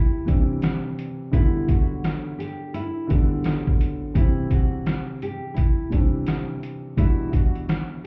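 Boom-bap hip-hop in E minor at 85 BPM, this moody, dark fragment cut from a longer piece moves with a 61% swing on the sixteenths in 4/4. A trip hop sampler-style drum kit sits up front, compressed and pitched down, with a gritty, tape-warm character, a thumpy kick, a medium-tuned snare, rim clicks and hi-hat, sounding as if re-recorded in a small room. A dark baby grand piano carries the accompaniment from B2 to F#4, its tone mellow and boxy with short sustain, placed close and forward. Above it, a nylon-string guitar plays a thumb-plucked classical melody between D4 and G4, full-bodied with fresh strings and touched by delay, sitting well behind the drums in level. The chords move from C to Em7 at 1.3 seconds, back to C, and land on Em7/B at 7.0 seconds. The whole mix is heard muffled, as though through a wall, with club reverb and light reverb.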